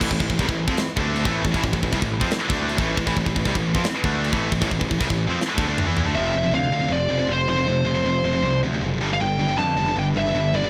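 This relentless, heavy metal excerpt opens with a full band at once: two bright, high-gain electric guitars play a picked, distorted riff, one of them sitting in the background, over a growly, fuzz-overdriven electric bass. A tight acoustic drum kit sits up front in a big room, with a tight kick, a medium-tuned snare and bright china and crash cymbals. Beneath it all, a very quiet studio string section holds bowed, sustained chords with a reedy, gut-string, period-style tone and a smooth top. The drums close their part with a fill from 5.4 to 6.1 seconds, and the harmony moves from A minor to F and then G. At 6.2 seconds a dark lead guitar takes over up front, carrying a melody with tape echo, while the riffing guitars, bass and strings carry on under a light reverb.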